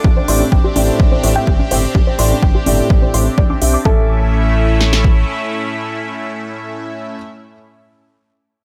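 Punchy, up-front kick and snare from a layered big-room dance kit drive this dreamy, emotional progressive house excerpt at 126 BPM in a straight 4/4, joined by crisp electronic hi-hats from 0.3 s, with very quiet, tape-tinged congas alongside from the start. A lush, bright detuned supersaw pad with phaser holds sustained chords over a round, deep analog bass. Meanwhile a soft, dark pluck arpeggiates through chorus and digital delay, and a felt-muted upright piano plays mellow, intimate stabs; both carry filter sweeps before the harmony moves from Csus2 to A at 3.9 s. A glassy, drifting harmonics texture sits calmly in the background, and sidechain pumping breathes through the pad, bass, pluck, piano, hats and texture under light reverb.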